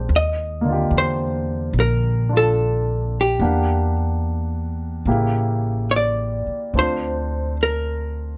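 Light reverb gives this short, intimate recording a late-night closeness, with each instrument sitting up front. It is a slow jazz ballad in swung 4/4, cut from a longer piece and lasting about 8.4 seconds, with all three parts playing throughout. A vintage hollow-body electric guitar carries the melody with a dark, clean, picked and compressed tone in its upper-middle register. A concert grand piano accompanies with a polished, present sound, deep bass, short sustain and audible action noise. An acoustic upright bass, plucked on steel strings, adds a woody, warm low end. The harmony moves from Ebmaj9#11 through Em7b5 and A7b9 to Dm7.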